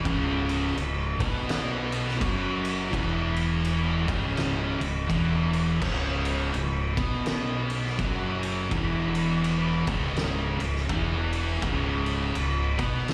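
Heard through a club PA in a small room, this sludgy, heavy stoner and doom metal excerpt rolls at 83 BPM with swung eighths on a single C# minor chord. An oversized low-tuned drum kit sits up front with a fat snare, punchy kick, crash and ride. A growly, overdriven fuzz bass fills the low end, and three guitars grind out the riff: a dark thick fuzz guitar and a bright, double-tracked tight distorted guitar with slapback echo in the background, plus a second thick fuzz guitar kept very quiet.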